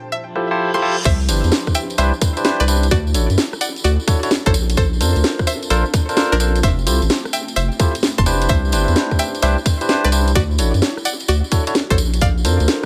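An echo-heavy, dry mix opens this soulful, bouncy, swung two-step UK garage clip with filter sweeps on an ethereal, airy pad and a barky, clean tine electric piano, while a twangy, string-like resonator pluck carries the chorused, delayed melody. From 0.4 seconds a layered garage kit with a cracking snare and bright hats enters as a reverse cymbal rises toward the drop at 1.1 seconds, where a thick, saturated sub bass, a tight, up-front electronic kick and a jingly tambourine join the kit to drive the delayed electric piano stabs over major-ninth chords.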